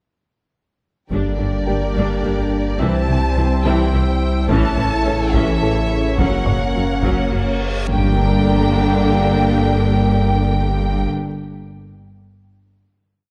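A brooding, vast hybrid orchestral and electronic film score in G dorian at 71 BPM in 6/8, where a rich, vibrato-laden violin melody sings over a second violin line, a driving viola ostinato, dark distant French horns, warm trombones, a swirling phased analog pad, a very quiet nasal sequenced synth pulse, a driving cello bass ostinato doubled by the double basses above a deep sub bass drone, single big taiko strokes and sparse, clear piano notes, until a reverse cymbal at 7.2 seconds leads into a low impact and a final Gm chord at 7.9 seconds, all in a dark, warm, moderate scoring-stage reverb.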